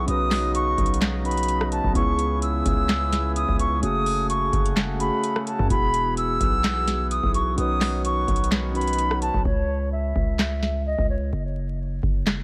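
Vinyl crackle hangs over this eerie, brooding trap fragment, cut from a longer piece and built on a half-time hip hop feel. A pure, expressive silver concert flute carries the melody with vibrato and a crisp attack, softened by a low-pass filter and trailed by digital delay. Beneath it, a clean tine electric piano sounds as if through its built-in speakers, and a reedy, nasal hand-pumped harmonium breathes dark, smooth sustained chords. Both drop out around 9.5 seconds for a break, while the flute continues until 11.3 seconds. Up front, a booming analog drum machine pairs a deep kick with a crisp snare, handclaps, rim clicks and metallic hi-hats, with a short room on the snare, claps and hats. A heavy, aggressive distorted 808-style bass with a noise layer, a fast attack and decaying notes anchors the low end through to the close at 12.4 seconds.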